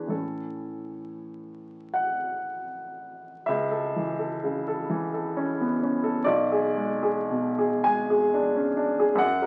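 Unfolding in 6/8 with a free, rubato pulse, this romantic classical nocturne moves at a slow 30-46 BPM counted in dotted quarters. A solo baby grand piano carries the whole fragment, its tone warm, natural and close up front, ranging from a deep B1 to G#5. Set in A major, the harmony rests on A before shifting to A/C# around 3.5 seconds, where a new passage begins, and then darkening to G#dim/B near 6.3 seconds. The mood is tender and dreamy, softened by a moderate studio reverb that lends the notes a brief halo. The sound carries the patina of a very old 78 rpm record, with vinyl crackle running beneath the playing. This short piece is cut from a longer work.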